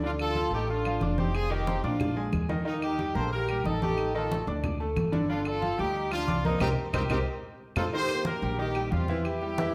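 A clear, tight horn section with vibrato carries the melody up front in this sunny, danceable salsa excerpt at 182 BPM, backed by a brilliant concert grand piano with deep bass. Pizzicato upright bass on gut strings adds a dark, thumpy low end, while low-tuned congas played with soft hands ring out and woody claves sit in the background, the mix bathed in a large, wet studio reverb. A drum fill and band accent from 6.6 to 7.9 seconds lead into a new section that opens on an Eb69 chord.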